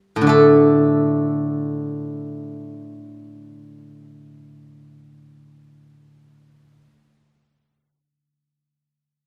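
In free time, this short excerpt from a longer piece of Chinese traditional music unfolds as a solo for steel-string zither, carrying a longing, contemplative mood. Played with fingerpicks and sitting up front, the acoustic zither has a silvery, ringing tone as it sounds from 0.2 to 6.8 seconds across a range from A2 to A4. A light reverb surrounds the instrument.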